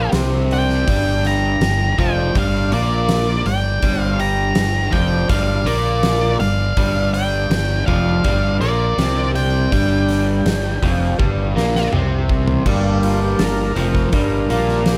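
A dark octave-fuzz lead guitar carries the melody in this gritty, smoky blues rock and southern rock power-trio passage in G minor at 82 BPM, cut from a longer piece, with a biting lead guitar's second line sitting in the background, a double-tracked, compressed overdriven electric guitar riff up front, a growly fuzz fingered bass and a big rock drum kit with a fat snare and punchy kick in a moderate club reverb, until both leads stop at 11.9 s during a drum fill from 11.2 s and a thick, overdriven tonewheel organ on a slow rotary speaker takes a solo from 12.7 s.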